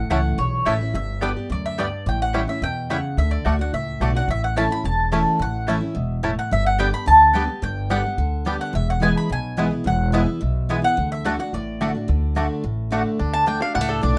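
A woody, up-front mandolin carries the melody of this joyful, driving bluegrass excerpt until 12.9 s, alongside a second, rounder mandolin playing stabs, a twangy fingerpicked banjo melody, a full-bodied dreadnought guitar with audible finger squeak, and a dark, thumpy pizzicato upright bass, all in a rough home-demo mix with light reverb.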